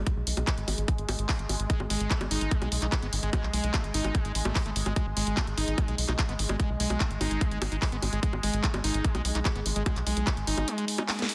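A dense, heavily limited mix with light reverb carries this hypnotic psychedelic trance excerpt at 147 BPM in G# phrygian, where a tight, dark sequencer bass with a punchy filter pluck and an up-front, tape-warm electronic kick drive beneath a garage drum kit of bongos, handclaps, hi-hat and a cracking snare, while a bubbling, detuned stepped-filter texture holds sustained chords with chorus and pumping, a squelchy, screaming distorted acid line enters at 1.7 s with resonant filter sweeps and digital delay, and a drum fill lands at 11.1 s.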